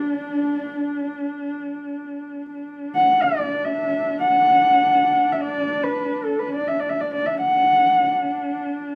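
In free time, this brief Mongolian folk passage cut from a longer piece carries a galloping, proud mood, as one dark, husky horsehead fiddle sings the melody up front and intimate with light vibrato, portamento and a soft attack, while a second horsehead fiddle, warm and expressive, holds a quieter drone with its own vibrato and sliding pitch, the pair playing live in one room under moderate studio reverb.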